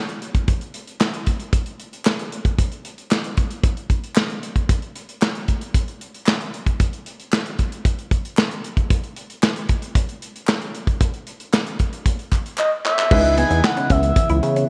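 Bright 1980s-style digital production with a lush hall reverb frames this slick, late-night early-eighties boogie funk excerpt, where a punchy, up-front studio drum kit with vintage 12-bit sampler grit and a very quiet, hollow group handclap carry the groove alone until a drum fill at 12.6 seconds ushers in a smooth, vibrato-laden synth lead, and at 13.1 seconds a C#m7 chord brings a glossy, retro pulse-wave chorused synth bass up front, with a dark, detuned analog pad, a clean, fingered electric guitar riff and a clear concert grand piano, each chorused, sitting in the background.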